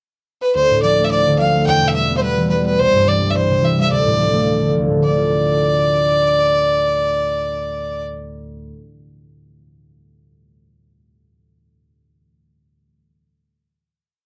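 A dry, close 1970s-style studio sound with light reverb frames this short, complete Celtic reel in D dorian, racing at 214 BPM in 4/4 with a lightly swung eighth-note feel and a wild, dark, lively mood. A single bowed fiddle, biting and earthy with light vibrato, enters at 0.4 seconds with a motif-based melody in period phrases over chords moving from Dm through Em and C back to Dm. Up front beside it, a mellow, thumb-plucked concert harp rings out bass notes and broken chord figures from 0.5 seconds until 8.9 seconds, sustaining past the fiddle's close at 8.0 seconds.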